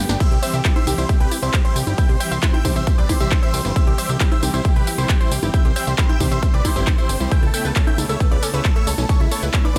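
Uplifting trance at 135 BPM with a driving, emotional mood, opening on a drum fill as a huge, euphoric supersaw lead with phaser and delay carries the melody over a bright grand piano second line, lush bowed strings holding sustained chords, a fat, nasal analog bass, and cassette-tinged unison pluck arpeggios, all five pumping to the sidechain beneath a punchy electronic kick and a big-room kit of snare, crisp hats, claps, congas, tambourine, ride and crash, with the harmony moving from C to Aadd9 at 7.3 seconds in this passage cut from a longer piece.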